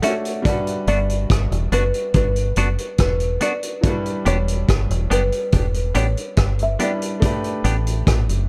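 A woody, thumb-plucked kalimba carries the melody through this tender, sweet lovers rock reggae excerpt at 71 BPM, its tape echo drifting over a clear, boxy grand piano with tube saturation and short sustain. A semi-hollow electric guitar adds clean, scooped, hollow-body stabs through subtle chorus and dub echo until 7.8 s. Meanwhile, a vintage kit with a punchy kick, hi-hat and rim click sits up front, and a deep, round, foam-muted fingered bass joins at 0.9 s as the chords move from Gmaj7 to Em7 to A9sus4, all set in a studio reverb with a dark, warm production.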